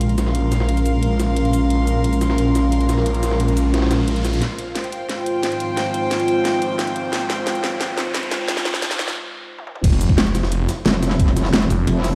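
Dark technical drum and bass at 177 BPM in F minor, aggressive and tense, where a moody detuned analog pad and floating bowed strings hold Bbm7 then Fm7 chords over a growling sawtooth bass, a tape-warm dubstep kit with a huge snare and metallic hats, and a gritty pitched-up jungle break, while a background riser and filter sweeps build to a break at 9.2 seconds before the drop at 9.8 seconds brings a knocking electronic kick and, from 10.9 seconds, a bright metallic wobble bass, all in a stone-room reverb.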